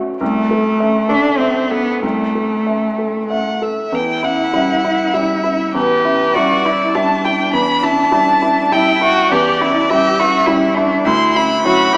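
Melancholic and full of longing, this neoclassical piece for piano and strings moves in a gently rubato 3/4, tuned slightly low at A4 = 436 Hz. An upright piano opens at 0.0 s with an intimate, woody accompaniment whose short sustain and audible action noise keep it close and natural. A single bowed cello joins at 0.2 s as a second line, focused with a smooth top. A solo violin enters at 3.3 s to carry the melody, rich, even and slightly distant in character, and both strings sing with vibrato. The harmony drifts from Am/C to Em7 and settles on Dadd9 near the end, all set in a moderate plate reverb within a rough home-demo mix with a small-speaker sound, cut from a longer piece.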